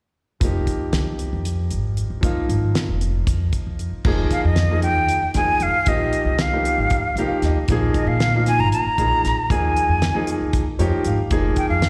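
A clear grand piano with slapback echo comps over a woody, thumpy pizzicato upright bass and a dry, damped 70s drum kit with a fat snare and tight kick to open this slick, funky electric jazz fusion fragment in 7/8 at 231 BPM (eighths) in F minor, moving from Fm11 to Bbm7 and back, before an airy metal jazz flute with vibrato and slapback echo takes the expressive melody up front at 4.3 seconds, the piano adding short fills at 6.9 and 10.5 seconds, the band heard as a live gig through a venue PA in recital-hall reverb.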